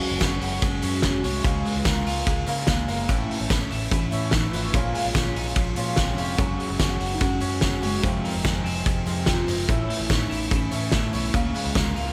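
Bright and youthful, this jangly indie pop excerpt at 146 BPM pairs a twangy, compressed twelve-string electric guitar playing arpeggios with spring reverb and tape echo against a woody, shimmering picked twelve-string acoustic, while a hollow clarinet-like synth lead with chorus and phaser sings a mellow melody in the background over a loose, up-front drum kit with a fat snare, a round, foam-muted fingered electric bass entering at 0.1 s, and a very quiet jingly tambourine, all moving through chords such as Gbsus2, Db6, A and Bbm7 in a small room.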